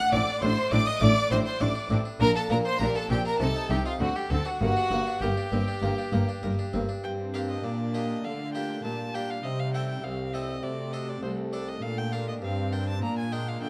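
A solo violin with a rich, smooth tone and a violin section with expressive portamento open this stormy, driving baroque-style concerto movement in G minor at 100 BPM, together with a focused second violin line and a bright, plucked harpsichord playing accompaniment. Beneath them, a distant viola section, a lush cello section and a bowed double bass section carry the harmony and bass line, with the double basses stopping at 6.8 s as the music shifts into its second section around 7.0 s. Close, detailed microphones capture the players in a moderate recital hall reverb, and the harmony moves through dark turns such as Cm, D7 and Adim/C before ending the excerpt on Bb7.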